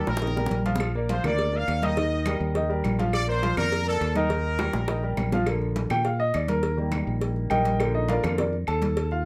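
A bright, punchy trumpet section opens this sunny, joyful salsa cut with a pop-style melody sung through light vibrato and a slapback echo, carrying the tune until 5.1 seconds. Underneath, a clear grand piano with long sustain sits up front as accompaniment, then takes a solo from 5.5 seconds to the close as the chords move between Eb and Bb in Bb major. A dark, round fingered electric bass anchors the low end directly and up front at a brisk 206 BPM in straight 4/4. The percussion fills out the groove: low-tuned bongos and cowbell with a small-room roundness, ringing congas played with hard hands and a vintage, band-limited tone in the background, and woody claves sounding distant in a large room. Drum fills mark the opening and the turn into the piano solo, all under a light reverb in this short extract from a longer piece.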